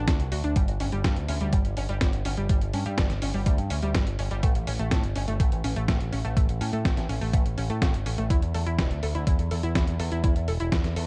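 A steady, straight four-beat pulse drives this short, danceable italo disco clip, anchored by a thumpy electronic kick that sits up front with an overdriven grit and the boxy character of a small room. Alongside it, a dusty soul sampler-style kit adds compressed hi-hat and a medium-tuned snare with a gritty edge. A picked electric bass runs through an envelope filter, bright and direct, sitting prominently in the mix from the very start. Above it, an analog pluck spins arpeggios with a bright, round, detuned tone blending sawtooth, square and triangle waves, a noise layer, ring modulation and a filter sweep, with a fast attack and short decay, treated with chorus and delay. The harmony moves from D7 to G5, then A at 4.4 seconds and E5 at 8.3 seconds, and the dark production and digital ambience lend the whole passage a nostalgic glow.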